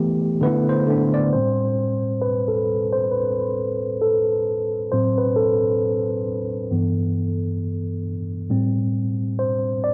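Hazy and melancholic, this hip hop fragment at 67 BPM in A dorian, cut from a longer piece, features a lone tine electric piano, worn, slightly out of tune, lightly overdriven and up front as if through built-in speakers, carrying a swung sixteenth-note feel through E7sus4, Am9, Am69, G69 and Am7, taking a solo from 1.3 seconds, all bathed in spring reverb and the muffled tone of a home cassette recording.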